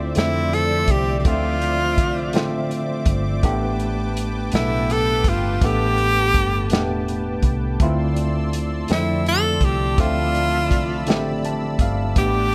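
Slow six-eight R&B with a yearning, sultry mood, heard here as a short cut from a longer piece. A breathy tenor saxophone carries the melody in a close-miked, jazz-style solo, its subtone and vibrato sitting up front. Beneath it, a worn tine electric piano plays the accompaniment, slightly out of tune and lightly overdriven as if through built-in speakers, and it adds a fill at 11.1 seconds. A vintage muted fingered electric bass gives round, punchy, foam-muted low notes, while a dry, dark soul drum kit with a tight kick and medium-tuned snare keeps time on hi-hat, kick and snare. High above, a lush, nasal unison pad of detuned sawtooth voices holds bright chords with a slow attack, long release and chorus, moving from Dm9 to A9sus4 and back under a light reverb.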